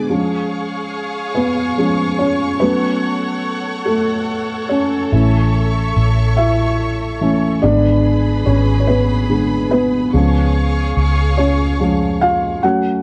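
A soft, boxy felt-muted upright piano carries this melancholic, aching pop fragment in a slow 6/8, set up front over a distant, lush bowed string section holding sustained chords with expressive vibrato. At 5.1 seconds a round, punchy foam-muted electric bass enters, dark and amped, anchoring the low end. Light reverb and a cassette-tape texture lend the piece an intimate, worn character.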